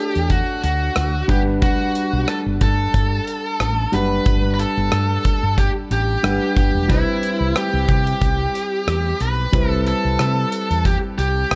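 Light reverb and a small-room ambience frame this nostalgic, glossy 1980s-style pop excerpt at 91 BPM with a slight sixteenth-note swing, where a bright, high-gain distorted lead guitar carries the melody up front over an intimate concert grand piano with audible action noise and long sustain, while a dark, growly fretless electric bass and a punchy acoustic rock kit of kick, hi-hat and rim click join at 0.2 seconds as the chords move from Dmaj7 to Gmaj7 and then to Cmaj7 at 6.9 seconds.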